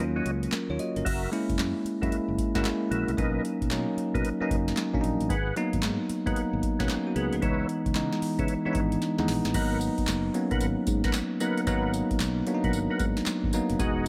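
A bell-like tine electric piano opens this confident, punchy new jack swing excerpt on a D#m7 chord, bright and clean up front, with an overdriven tonewheel organ adding gritty, percussive stabs colored by chorus vibrato and a slow rotary speaker, while a round, dark fingered electric bass sits underneath. During a short opening break, a booming analog drum machine enters at 0.3 seconds with a deep kick, crisp snare, metallic hi-hats, handclaps, tambourine and crash cymbal, its gated reverb and short room giving the snare, clap and hats a tight, tape-toned punch. At 113 BPM in 4/4 with a swung sixteenth-note feel, the groove moves in G# minor through F#7, Bmaj7, G#m7 and C#m7. A drum fill arrives at 9.0 seconds, leading into a final stretch resting on G#m9. The whole piece carries light reverb, keeping the electric piano and drums up front.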